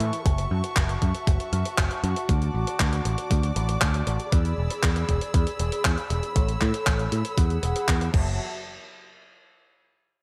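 A dark chamber string section opens this excerpt from a longer italo disco piece, holding sustained chords with a soft attack, light vibrato and a hushed sul tasto tone, played close and intimate. Alongside it from the start, a picked electric bass sits up front with a warm, direct and amped sound, anchoring a nostalgic, melodramatic progression that moves from F#m7 through D and E7 to Aadd9 and Eadd9 before returning to F#m7. A clean 12-bit digital drum machine supplies crash cymbal, handclaps and hi-hat, its sampler-style hits overdriven, treated with gated reverb and re-recorded in a small room. An electronic kick drum joins at 0.3 seconds, thumpy and overdriven, locking into the straight 4/4 feel. The drums drop out at 8.2 seconds, and the strings and bass follow at 8.4 seconds, leaving a brief stretch with chords gone as the excerpt closes.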